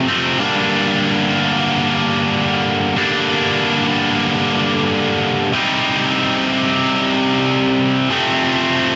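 A tight, distorted electric guitar plays alone in free time, its bright, picked tone double-tracked and placed up front, with digital delay trailing its lines through a range from F2 to Eb4. This short rock excerpt carries a melancholic yet cathartic mood as the harmony moves from Gm to Cm at 5.5 seconds and reaches F at 8.1 seconds. A moderate large-studio reverb and digital ambience surround the guitar, and the top end is rolled off above 7.7 kHz.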